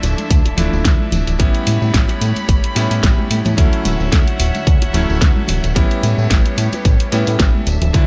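A layered pop kit with a fat snare and warm hats sets up a swung sixteenth-note groove in 4/4 from the start, and a punchy, up-front electronic kick enters at 0.3 seconds to anchor it, while tambourine, bongos and congas sit close and dry in the background. This brief nu-disco excerpt feels groovy and sunny. A thick, detuned analog bass with a nasal sawtooth edge and a filter pluck sits up front beneath a bright, cutting vintage electric grand piano, whose accompaniment passes through a low-pass filter, delay and sidechain pumping. A chamber string section holds sustained, bowed chords with light vibrato and an intimate sul tasto tone, also carrying sidechain pumping, as the harmony moves between Dmadd9, A9 and Dmaj9. At 7.1 seconds a mellow, ringing vibraphone played with soft mallets and fast motor vibrato sounds a single B4 through delay, set back in a digital ambience.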